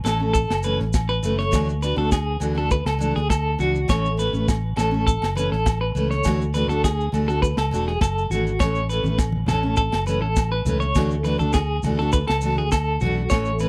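Joyful, danceable highlife guitar band music at 102 BPM in a dry, close 1970s-style studio sound, alternating A and Dadd9, where a twangy, up-front clean electric guitar plays arpeggios through tremolo and tape echo over a full-bodied, fresh-stringed acoustic guitar with audible finger squeak, a round, dark fingered bass and a tight, polished funk drum kit, while ringing agogo bells and grainy maracas sit in the background and soft-handed, low-tuned congas slip in very quietly at 9.0 seconds.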